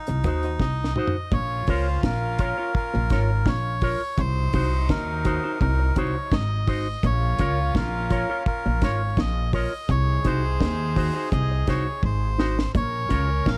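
Roots reggae at 84 BPM in Bb minor, hypnotic and serious, this excerpt sets a breathy, nasal melodica melody over a clean, picked envelope-filtered guitar accompaniment, a bright, twangy envelope-filtered guitar riff with warbly pitch drift in the background, woody pizzicato upright bass and a dry, dark drum kit with a high-tuned snare and tight kick up front, while a gritty, overdriven reed electric piano adds fast-tremolo stabs through a combo amp at the start and near 13.1 seconds, a punchy, vintage horn section plays a tight second line from 1.3 seconds, drum fills arrive around 0.6 and 12.0 seconds, and vinyl crackle sits over a close, nearly reverb-free sound.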